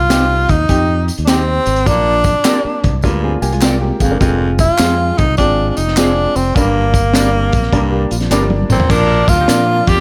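An up-front, breathy tenor saxophone with a close subtone carries the melody over round, punchy fingered bass, a woody, slightly detuned upright piano, a crunchy breakbeat kit with a high-tuned snare, and background handclaps and tambourine in this urgent, passionate 1960s-style soul excerpt at 102 BPM with a swung feel, as a dark, slightly broken-up guitar through a small old amp adds chorused stabs, a raspy baritone saxophone riff enters at 1.9 seconds, a clean hollow-body jazz guitar plays a brief riff at 3.0 seconds as the piano fills, and a clear saxophone section takes up a second line at 8.9 seconds over moves from Cm through Bb, Fm and Gm.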